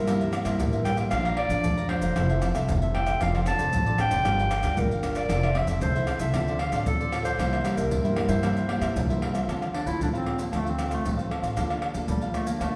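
Nostalgic yet lively, this short piece of samba and choro moves in a straight four-beat feel, cut from a longer performance. A warm clarinet carries the melody in a classical, solo style, sounding distant and roomy as it ranges from G3 up to A5. Beneath it, a fingerpicked nylon-string guitar with fresh strings adds classical accompaniment, complete with audible finger squeak, while a crisp, picked cavaquinho sits further in the background. A woody pizzicato upright bass strung with steel anchors the low end, and up front a vintage, band-limited percussion section of maracas, tight surdo, pandeiro and tamborim drives the groove. The harmony drifts through chords such as C7, Bbmaj7 and Fmaj7 before a new section begins at 9.5 seconds on Dm7, and the ensemble rings out in a wet recital hall that gives the whole a churchlike sense of space.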